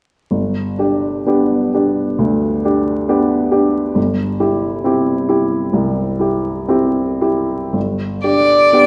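In a flexible, rubato 4/4 pulse, this serene and lyrical romantic duo for violin and grand piano unfolds at an unhurried pace, cut from a longer piece. A warm, open baby grand sits up front from 0.3 seconds, carrying the accompaniment through a low-to-middle register and moving gently from a G chord to C over a G bass before settling back on G as the music turns to a new section at 7.8 seconds. Only at 8.3 seconds does the single bowed violin enter, holding one high note with a smooth, even tone and lush vibrato that feels both rich and slightly distant. The violin sounds a touch more prominent than the piano, and both stop together at 8.9 seconds. A generous recital-hall reverb surrounds the pair, and vinyl crackle lends the recording a nostalgic patina.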